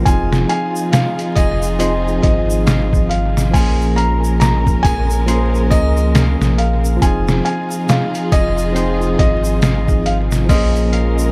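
Cinematic and melancholic, this short trip hop excerpt sways on a swung groove as a gritty, pitched-down sampler-style drum kit with a thumpy kick sits up front beside a deep, round sub bass, while a faint tube shaker and triangle add texture. A tine electric piano with harmonic tremolo and tape echo carries the Fm7 to Bbm7 changes under lush bowed violins, and a ringing concert harp arpeggiates in the background through dub echo. Above it all, a felt-muted upright piano plays an intimate melody, its audible action noise colored by 12-bit sampler grit and dub echo, in an echo-heavy small-room mix flecked with vinyl crackle.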